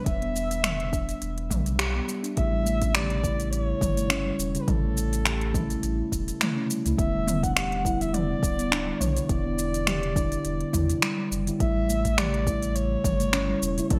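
A relaxed 4/4 groove at 104 BPM with a light swing on the sixteenths drives this earthy, peaceful organic downtempo excerpt in A mixolydian, cut from a longer piece and moving between Em7 and A7. A deep, overdriven electronic kick sits under an up-front organic electronic kit of finger snaps, crisp hi-hat, shaker and toms, both roughened with overdrive and small-room ambience, the kit also carrying gated reverb. A round sine sub bass holds the low end. A soft, ringing steel tongue drum struck with rubber mallets plays meditative arpeggios with delay, filtered by a sweep through the opening 2.4 seconds, with a band accent at 1.8 seconds. At 2.4 seconds muted, felt-like synth keys enter as intimate accompaniment, treated with chorus, delay and sidechain pumping. Over it all, a dark, woody bowed kamancheh carries the melody with vibrato and portamento, its echoes trailing in a bright 1980s-style digital sheen with light reverb.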